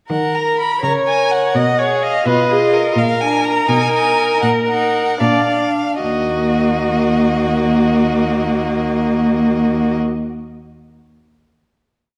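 A recital hall's wet reverberation surrounds this brief, complete classical-period movement for string quartet, with a close, focused cello and a more distant viola. In Eb minor and a rubato 6/8 at roughly 71-86 dotted-quarter beats per minute, the mood is stormy and restless, and the pace slows from 2.3 seconds. The first violin sings the up-front melody with vibrato, portamento and a smooth, expressive tone. A darker second violin enters at 0.4 seconds with soft-edged syncopated and sustained chords. Beneath them the rich viola weaves a counter-melody and holds chords, while the cello moves between pizzicato and sustained bass. The theme leads through a colorful Bmaj7#11 harmony before settling onto a closing Eb minor chord at 6.0 seconds.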